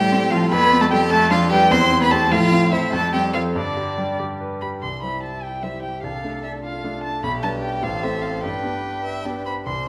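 A spirited, cheerful classical-period movement for piano quartet in a straight 6/8, heard as a short section cut from a longer piece, with a change of section at 4.8 seconds. An up-front violin carries the smooth, even melody with light vibrato over a focused, close second violin and an expressive cello whose soft attack and portamento give the inner lines a mellow glow. The cello drops out at 9.3 seconds, while a polished, intimate concert grand supplies the accompaniment with deep bass, long sustain and audible action noise, all set in a reverberant recital hall.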